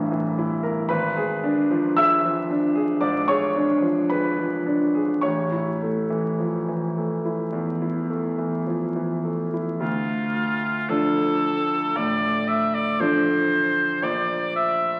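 Elegiac and solemn, this slow romantic classical duo, cut from a longer piece, moves with rubato at around 51-59 BPM in 4/4, as a clear, deep-bassed concert grand piano accompanies from the opening through dim chords toward A and D minor, joined at 9.8 seconds by an up-front bright oboe singing with light vibrato, all set in a wet recital hall reverb and heard through the crackle of a very old 78 rpm record.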